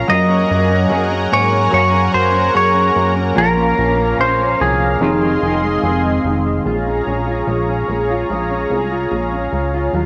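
A hazy home cassette recording, set in a wet, short studio reverb, carries this melancholic dream pop excerpt in Bb minor at 73 BPM in a straight 4/4. Up front, a twangy lap steel plays the slide melody through plate reverb, tape and analog delay until 6.2 s, while a very quiet, bright semi-hollow electric guitar picks out the accompaniment until 7.2 s. A thick, warbling unison pad holds sustained chords with chorus and plate reverb, and a dark, fingered electric guitar plays arpeggios under subtle chorus and delay. A glossy, retro synth bass with a filter pluck anchors the low end, and early on a faint, bell-like glockenspiel rings a single Ab5. The harmony moves from Gbadd9 to Bbm and Fm7 before settling on Bbm7 as the closing section begins at 6.7 s.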